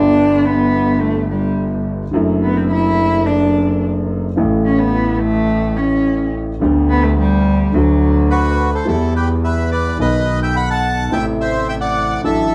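Set back in a wet studio room, this sultry, tense tango at 107 BPM moves with a rubato feel in G major, where a warm bowed cello sings an expressive solo with vibrato and portamento over a dark, woody upright piano with audible action noise and a clear, earthy bowed double bass, until a reedy bandoneon with plate reverb takes the melody at 8.3 s and the music turns to E minor at 8.9 s.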